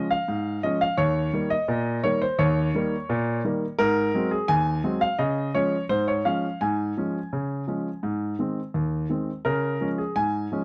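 A clear concert grand piano plays solo throughout, offering playful, jaunty ragtime in a straight two-beat metre at an easygoing pace. The harmony moves from its home chord through dominant sevenths, returns to the home chord over an Ab bass near 5.2 seconds, and comes back home at 9.5 seconds. The piano covers a broad span from low Eb2 up to Ab5, with a deep bass. It sits up front with a natural tone and a touch of light reverb. The sound suggests a dry, close 1970s-style studio recording, and this short piece of about 10.6 seconds is cut from a longer work.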